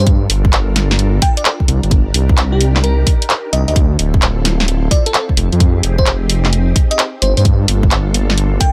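A swung two-step garage groove in 4/4 drives this short, late-night and soulful UK garage cut, built on a punchy, layered electronic kick drum and a house drum kit of handclaps, bright hi-hats and a punchy snare, both placed up front from 0.1 seconds. Underneath, a dark, detuned saw bass rumbles deep and saturated, its beating tones sitting up front in the mix. A bell-like FM electric piano carries the melody with sparkling, decaying notes coloured by chorus, phaser, tape echo and a touch of vintage 12-bit sampler grit. Behind it, a silky, soft string machine holds sustained chords with a slow attack, treated with phaser, ensemble chorus and sidechain pumping. The harmony moves through lush minor ninth chords, Gm9 to Cm9, Dm9 and Fm9 before returning to Gm9, and the dry, close sound keeps every part intimate.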